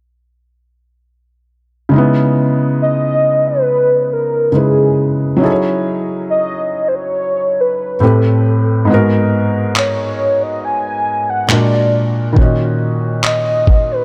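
Moody and sensual, this excerpt of contemporary R&B moves at a slow 69 BPM in a straight 4/4, cut from a longer piece. A felt-muted upright piano opens the accompaniment at 1.9 seconds, its soft, intimate tone sitting up front with audible action noise. A velvety synth lead carries the melody from 2.8 seconds, its smooth, full-bodied blend of detuned sawtooth and triangle waves shaped by chorus, tremolo, vibrato and digital delay. The harmony drifts through colours such as C#m9, F#sus2, Am7 and A#7b13 before settling on D#m7. A dusty soul sampler-style drum kit arrives at 9.8 seconds with handclaps and a thumpy, gritty, compressed kick pushed up front. Light reverb and digital ambience frame a dark production.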